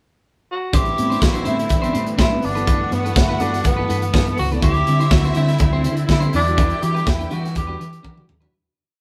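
A breathy, whispered tenor saxophone carries intimate hook phrases with scooped notes over a driving, sultry disco groove at 123 BPM in A dorian, where a tight funk drum kit pounds a four-on-the-floor beat with sixteenth-note hats, a round, dark hollow-body bass plays octave lines with slides, a clean electric guitar chops sixteenths and a worn, slightly out-of-tune tine electric piano adds a percussive groove in the background, while a lush violin section plays fast runs into held notes and a distant string section holds a clear pad, the band playing live in a stone room before a fade-out from 6.6 seconds and a closing drum fill at 8.0 seconds.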